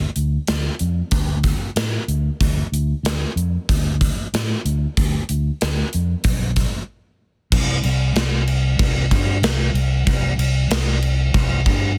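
The recording is dense and heavily limited, with a dry, modern sound and little reverb, in this heavy, menacing hard rock fragment cut from a longer piece. A fingered electric bass sits up front from the start, its amped, growly tone sitting between B1 and A2. A gated 80s drum kit enters at 0.2 s with a punchy kick, a medium-tuned snare, hi-hat and bright crash cymbals, all ringing in a stone-like gated room. The groove is straight and steady in four, and a brief break at 6.9 s sets up a new section that begins at 7.5 s. Bass and drums carry the whole passage together, pressing forward with a forceful, ominous weight until the cut.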